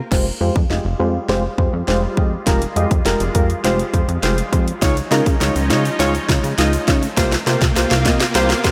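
Dance-pop with a bittersweet yet confident mood, this brief cut from a longer piece is one long build-up, with a drum fill and filter sweep running throughout as the chords move from Fmadd9 to Dbadd9 and then C7sus4. A punchy, overdriven house drum kit sits up front with a cracking snare and bright hats, while round, detuned analog keys with slapback echo and a plucky, wave-folded analog bass pump against the kick, and a thick unison pad glows in the background. A very quiet riser enters at 4.7 seconds and a grainy, distant egg shaker at 4.8 seconds, all inside a lush hall reverb that gives the mix a big arena sound.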